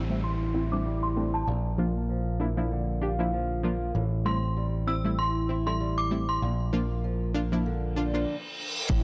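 Dancehall at 97 BPM with a swung sixteenth feel, tough and sultry, cut from a longer piece and moving between Am7 and Bb under a filter sweep in a digital ambience. A punchy, bright picked electric bass sits up front beneath a dark, boxy fingerpicked old ladder-braced acoustic guitar playing arpeggios, while a round sawtooth analog pluck with chorus fills out the accompaniment and an inharmonic, warbling FM synth chime carries the melody until 6.4 seconds. A downlifter and reverse cymbal sweep through the opening and again from 8.2 seconds, before a deep electronic kick drum lands at 8.9 seconds.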